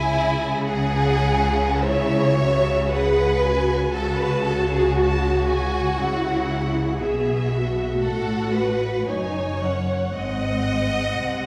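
Lush, bowed violins with expressive vibrato carry the melody of this solemn, elegiac passage of slow romantic string music, which is cut from a longer piece, while a second violin line sits up front beneath them in rubato. A close viola section enters at 1.8 seconds with warm accompaniment, and rich cellos with portamento join focused, smooth-topped double basses to anchor the low end. The ensemble sounds through a wet reverb that suggests a church or concert hall.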